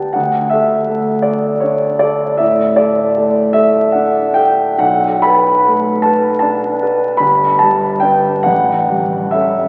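Nostalgic and tender, this romantic classical nocturne for solo piano unfolds in a rubato 12/8 as a warm concert grand with deep bass and an up-front presence moves through Bm7, G and A7, its sound bathed in a wet cathedral reverb and the crackle of a very old 78 rpm record in this brief cut from a longer piece.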